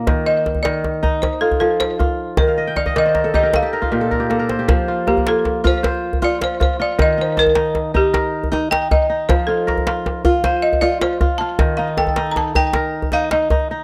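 A rolling 12/8 pulse at 104 beats per minute, counted in dotted quarters, drives this hypnotic, flowing slice of West African traditional string and xylophone music in F mixolydian, cut from a longer piece. A bright, fingerpicked kora sits up front, spinning ringing, crisp arpeggios across a broad span from Bb2 to A5. Beside it, the djembe is tight and cracking, played with soft hands and captured close and dry. The balafon carries the melody with a woody, buzzing, dark and smooth tone from hard rubber mallets, touched by a slapback echo. After a kora fill from 2.5 s and a drum fill at 3.9 s, the balafon takes a solo at 4.7 s as the harmony sways between F and Eb. The whole has the intimate feel of a close 1970s-style studio session, touched with light reverb.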